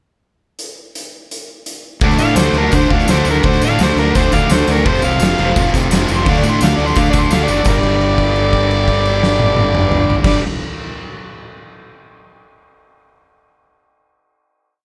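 Light reverb gives this short, rowdy garage rock piece a raw, swaggering sound. It opens with a pickup bar on an oversized, low-tuned drum kit that is dark and saturated, with a fat snare and punchy kick sitting up front. At 2.0 seconds a double-tracked fuzz guitar plays driving eighth-note power chords over an overdriven fingered bass, while a buzzy vintage combo organ holds triad chords in the background. Moments later a jingly tambourine joins and keeps a pattern until 7.8 seconds, and an amplified, gritty harmonica enters to lead with a lick-based theme full of tongue slaps and scooped notes before holding a long note over the closing G chord from 7.7 seconds.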